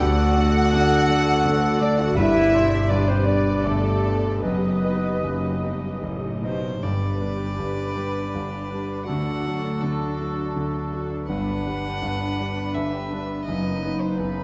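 A moderate scoring-stage reverb lends space to this tender, hopeful cinematic cue, cut from a longer piece and flowing in a rubato triple metre. Up front, a clear concert grand piano with deep bass carries the accompaniment beside lush, woody violas, while sul tasto violin sections in the background play the melody and a second line over floating cellos and dark double basses, and mellow, vintage French horns hold sustained chords. A distant cor anglais and an airy, hollow flute group (until 6.0 s) add second lines, very quiet timpani struck with soft mallets sound a round G2 at 2.2 s, and from 6.5 s a pure solo violin takes up the melody, with a gentle clarinet joining beneath it at 6.8 s.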